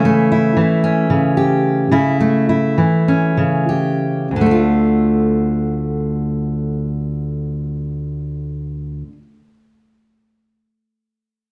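A fingerpicked steel-string dreadnought guitar sits up front, its tone bright and full-bodied, spanning D2 to G4 as it plays an accompaniment role from the start until 9.2 seconds. This short folk passage in D harmonic minor, cut from a longer piece, feels stirring and bittersweet. It moves in a straight 4/4 with a tempo between 92 and 115 BPM, slowing down through the opening phrase. That first section rests on an A/C# chord before the music settles onto D minor at 4.3 seconds, where a second section begins. A large studio reverb with a 0.9-second decay gives the guitar a wet, roomy glow.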